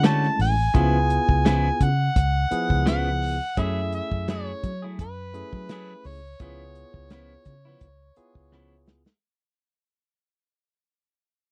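A mournful, smoky soul blues in a straight-eighth 4/4 feel at 85 BPM opens with the full band already playing: an amplified, overdriven harmonica takes the melody up front. Its gritty tone carries light vibrato, scooped notes and tongue slaps in a jazz-inflected solo between B4 and A5. Underneath, a barky, bright tine electric piano plays clean, direct accompaniment, while a dark, compressed clean electric guitar adds fingered stabs. A round, foam-muted vintage electric bass sits prominently in the mix, and an acoustic soul drum kit with a tight kick, medium-tuned snare, hi-hat and a rolled-off top keeps the groove smooth. The harmony moves from Dmaj7 through C#7#9 and F#m9 before returning to C#7#9, and the whole passage fades out throughout, with a drum fill arriving at 8.5 seconds. The sound is a dry, close 1970s-style studio recording with little reverb, cut from a longer piece.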